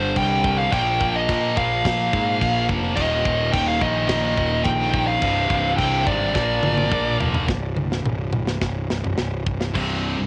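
A half-time 4/4 groove at 106 BPM opens this dark, relentless heavy metal excerpt in C minor, where an up-front, dark-toned high-gain lead guitar carries the melody until 7.2 seconds over riffs from a bright, tight distorted guitar and a scooped, background high-gain guitar, both tinged with cassette tape character, while a round, fuzzy overdriven bass and a tight acoustic drum kit with bright cymbals push through drum fills into a chordless passage at 7.5 seconds, all in a small room with light reverb on a home cassette recording.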